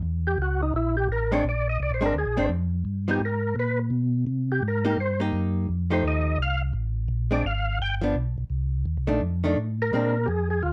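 Greasy and soulful, this swinging jazz excerpt moves at 170 BPM in Bb mixolydian, with a round, dark tonewheel organ carrying the bass line from the start through chorus vibrato and a slow rotary speaker. A gritty, overdriven second organ with percussive second-harmonic attack takes the solo melody from 0.3 seconds, also treated with chorus vibrato and slow rotary. From 1.3 seconds a clean, picked, compressed hollow-body archtop guitar adds accompaniment under light reverb, as the changes run from A13b9 through Cm7 and F9 back to Bb9.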